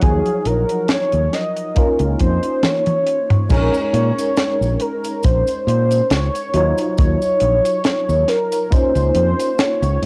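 Hazy and lo-fi, this home cassette recording sits in a light studio reverb, and its melancholic vaporwave mood drifts along at a slow 69 BPM in Bb minor with a gentle swing on the sixteenths. Up front, a velvety synth lead blending sawtooth and triangle tones carries the melody with a fast attack, long sustained notes, vibrato, chorus, tape echo and cassette coloring. Beneath it, a clean tine electric piano played through a combo amp fills out the accompaniment with an ensemble chorus and the same cassette grain, while a fingered electric bass, warm and direct, anchors the low end. A tight, polished funk kit with a high-tuned snare, hi-hat, cabasa, toms and crash sounds dry and airy in a small room, joined by a tight kick that drops out at 8.9 s. A drum fill from 2.6 s leads into a new section at 3.5 s, as the harmony moves from Ebm9 and Db69 to Bbm7 before cycling back to Ebm9 and Db69.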